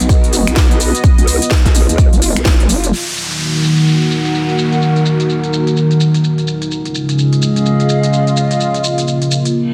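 Bass house at 127 BPM in Eb minor, swung and bouncy with an aggressive edge, this excerpt opens on a nasal, formant-filtered wobble bass and a punchy, overdriven kick that both drop out by 2.9 s, while a detuned sawtooth pad with a sub octave pumps under sidechain and a garage kit of cracking snare, crisp hats, shaker and finger snaps sits low-pass filtered and tape-softened in a large room. The chords start on B, shift to Ebm at 2.9 s as a downlifter sweeps through, and a warbling, wave-folded lo-fi pad with a dark, nostalgic tone enters at 3.4 s; the harmony then moves to Db at 6.7 s, before a reverse cymbal closes things at 9.6 s. The master is dense and heavily limited, with a moderate digital room reverb.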